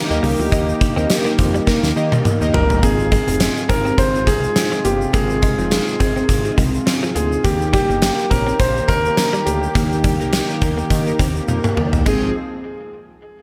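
A gated 1980s drum kit sits up front with a punchy kick, fat snare and bright cymbals, adding drum fills around 1.7 and 11.5 seconds, in this glossy, nostalgic pop excerpt at 104 BPM in Ab major with a light 16th-note swing. A smooth, vintage grand piano carries the melody with long sustain and slapback echo. Glassy digital keys with chorus and slapback echo, a thick detuned sawtooth bass, a shimmering pulse-width pad in the background, a very quiet clean direct-recorded guitar riff and a grainy tube shaker fill out the Eb and Ab6 chords in a big, arena-like hall reverb.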